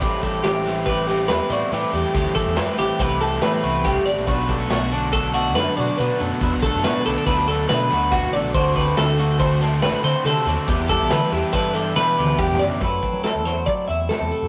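In a straight 5/4 at 141 BPM, this intricate, restless math rock and midwest emo piece has a clean, twangy, up-front twelve-string electric guitar playing accompaniment beneath a second twelve-string playing bright arpeggios with spring reverb, while a crunchy, double-tracked overdriven guitar riff, a growling, round overdriven bass and a dark, smooth small-room drum kit move through Am9, Bm7, D7 and Em7 until a drum fill at 12.0 seconds leads into F#m7b5 at 12.8 seconds, where the riff guitar drops out, all captured in a rough rehearsal-room recording with light reverb.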